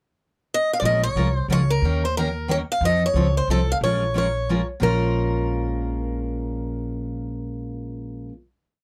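Acoustic string swing in the jazz manouche style, this short, complete piece in Bb minor moves at a fiery 180 BPM in 3/4, with swung eighths and a bittersweet edge. A boxy, picked swing-style acoustic guitar carries the melody from 0.5 s, built from hook-like motif phrases. Beneath it, a full-bodied jumbo steel-string guitar picks out rhythm on every beat, short and accented on two and three. A woody, thumpy upright bass on gut strings plays root and fifth with walk-ups, and both accompanying parts enter at 0.8 s. The harmony moves from Bbm7 through Eb7 and F7 back to Bbm7 before settling on a final chord. All three instruments sit up front in a dry, close 1970s-style studio sound with light reverb, and fresh strings give both guitars a bright tone.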